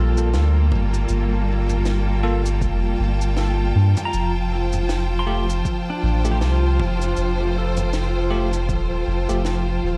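Ambient dub at 79 BPM with a swung 16th feel, meditative and spacious, where a round, up-front sub bass with tube saturation and lush, vibrato-rich bowed strings hold Gm7 then Fadd9 at 4.1 seconds, while a pedal steel guitar's fingerpicked slide arpeggios and a bell-like electric piano's stabs trail dub echo in the background, a high-tuned snare, shaker and toms from a tight kit sit back with their own echo, an overdriven electronic kick joins at 2.6 seconds, and vinyl crackle colours an echo-heavy studio mix.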